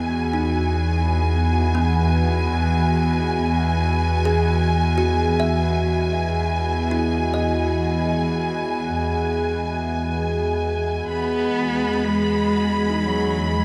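Luminous and weightless, this ambient passage from a longer piece floats on sustained chords from a glassy, chorused FM pad, with a woody kalimba ringing out delayed arpeggios in the background, a pure, up-front cello section holding a low bass note, a very quiet, reedy pedal harmonium drone and a focused violin section adding high vibrato texture, and at 11.1 s a rich solo cello joins with a melody, all bathed in a huge, wet reverb and a cassette-tape tint.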